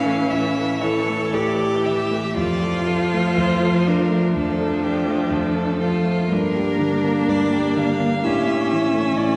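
An intimate concert grand piano with deep bass and audible action noise accompanies this elegiac, solemn fragment of a slow romantic piano-quartet movement in D minor, moving freely at 58-64 BPM while a focused violin sings the melody with vibrato, an even, up-front cello carries a second line, and a soft-attacked viola adds expressive portamento accompaniment in the background, all bathed in a wet church reverb as the harmony passes from A through Dm/F and Gm back to A by 8.2 seconds.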